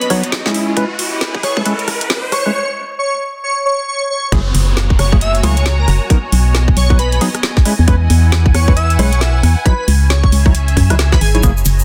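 UK garage in a skippy, soulful two-step vein at 135 BPM with swung sixteenths in C# dorian, this excerpt opens with a build-up where an airy, dreamy lead carries the melody over a silky string machine, distant symphonic strings, a garage kit of woody snare, rim click and metallic hats, and a hollow organ stab under a filter sweep, while a riser lifts the first 2.5 seconds and a tight kick briefly appears. At 4.3 seconds the drop lands as the up-front kick returns alongside a dark, organ-like FM bass, with chords moving through F#9, Bmaj7, E6 and C#m11 and the pads pumping against the beat. A grainy tube shaker slips in only at 11.4 seconds, all set in light reverb under a dense, heavily limited modern master.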